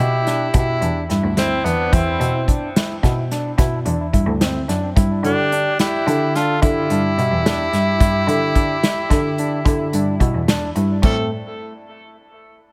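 A clear, classical-style tenor saxophone carries the melody up front, its light vibrato, soft attack and smooth top touched by dub echo, in this brooding, intricate progressive instrumental taken from a longer piece. It moves in a straight 11/8 at 217 BPM counted in eighths, with the harmony shifting from Em to G5 at 5.0 seconds before the chords drop away at 11.0 seconds. Beneath it, a single bowed cello holds the bass with a nasal, reedy gut-string tone in period style, sitting up front despite a distant quality. Further back, a mellow jazz-style flugelhorn plays a second line with vibrato and scooped notes in a roomy space, while an overdriven tine electric piano spins barky, gritty arpeggios through a combo amp, also echoing in dub fashion. An acoustic drum kit played with bundle sticks, heard up front in a small room, brings a punchy kick, medium-tuned snare, hi-hat and crash from 0.3 to 11.2 seconds, all set in an echo-heavy mix with light reverb and studio ambience.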